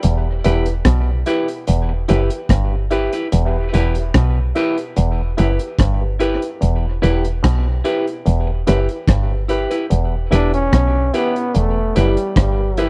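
A round, woody FM bass sits up front in this heavy, deep dub reggae excerpt in E dorian at 73 BPM, alongside a gritty, saturated breakbeat kit with a tight kick and rim clicks, a nasal clav riff, clean hollow-body guitar and a dark upright piano's stabs, all three soaked in tape echo, before a bright trombone with light vibrato takes the melody at 10.3 seconds in a dry, close 1970s-style studio sound.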